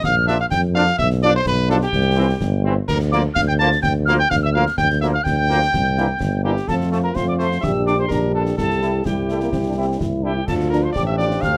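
Close, detailed microphones and light reverb frame this rousing, proud military-style wind-band march, cut from a longer piece, where an up-front mellow cornet carries the melody over a warm, close-miked tuba bass, a pure, distant wooden piccolo adds a tongued second line high above, a dark, roomy French horn section accompanies, a tight, vintage-toned trombone section holds sustained chords, concert snare drum, bass drum and clash cymbals keep the beat, and a clear euphonium joins with its own second line at 9.1 seconds.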